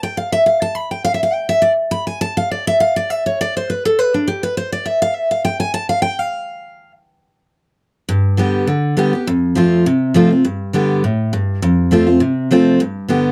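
A bright, full-bodied picked dreadnought steel-string acoustic guitar sits up front with audible finger squeak in this joyful, virtuosic bluegrass solo at a brisk, swung 204 BPM in G mixolydian, opening unaccompanied before alternating between G and F from 8.1 seconds, all captured in a dry, close 1970s-style studio sound with light reverb.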